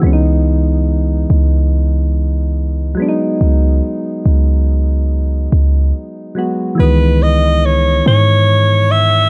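Soft, round electric-piano-like synth keys with a gentle chorus open this moody, longing contemporary R&B excerpt over a deep, boomy 808-style bass sitting up front, moving from C#m7 to G#m7/C# before a brief break at 5.9 seconds, after which an alto saxophone enters at 6.8 seconds with a jazz-style solo of light vibrato, subtone and scooped notes, all set in a dark studio reverb.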